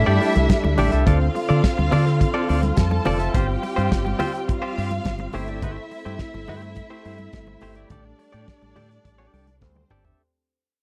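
A dry, close 1970s-style studio sound frames this sultry, danceable disco excerpt at 105 BPM, where a fat-snared soul drum kit and a round, dark fingered electric bass sit up front, a bright, twangy clean electric guitar plays accompaniment, a lush bowed string section holds sustained chords beneath a woody second string line, ringing congas sit in the background, the chords move from A7sus4 through Dm7 and G7sus4 to C6/G, and the whole fades out across its length while a drum fill arrives at 9.6 seconds.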